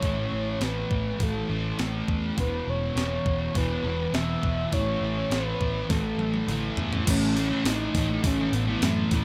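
Shoegaze-tinged dream pop rock, wistful and hazy, where an up-front, double-tracked fuzz guitar riff with analog chorus drives beneath a soft, warbling, octave-layered synth lead with chorus and delay, while a dark, round, foam-muted electric bass and a thumpy, overdriven 12-bit drum machine with crash, hi-hat, snare and toms hold the pulse, the drums rolling into a fill at 5.9 s before a new section arrives at 7.1 s, all bathed in a dreamy plate-reverb mix.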